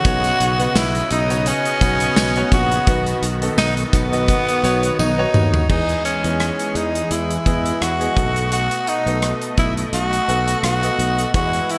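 A raspy, up-front tenor saxophone with delay carries a romantic melody over a clear concert grand piano, a brassy, chorused analog pad in the background, a punchy big rock drum kit and a very quiet, jingly tambourine that drops out at 5.7 s as a drum fill ends, while a growly sustaining fretless bass holds the low end in this glossy, lightly swung 1980s-style pop excerpt, bathed in lush hall reverb with a faint mains hum.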